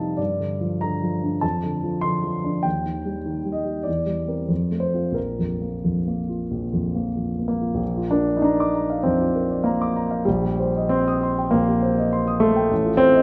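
Classical romantic character piece for solo piano in Bb major, passionate and hopeful, moving at 88-104 BPM in 4/4 with a flexible rubato feel and tuned to A4 = 441 Hz. A dark, mellow grand piano sits up front and spans A1 to Eb6, drifting through Gm7, Dm/F and Eb toward a C7/E and F before settling on Bb5 at 5.2 seconds. A new passage opens on Bb at 7.8 seconds and reaches Cm7/Bb and F7/A, all bathed in the wet reverb of a recital hall in this short excerpt cut from a longer piece.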